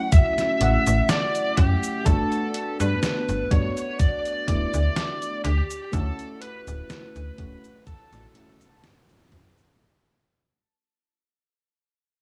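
A lightly swung 62 BPM pulse in 4/4 from a thumpy, up-front electronic kick and a detuned 8-bit drum machine's cabasa, hi-hat and medium-tuned snare in gated reverb anchors this faded, dreamy vaporwave piece, where a snappy, metallic slap-like FM bass enters at 0.6 seconds beneath a soft, round FM electric piano bathed in lush chorus and analog delay, while a biting, overdriven lead guitar carries the melody through 12-bit sampler grit and tape echo over Dmaj7 and Gmaj9 chords, set in a small room's digital ambience and fading out across the whole clip.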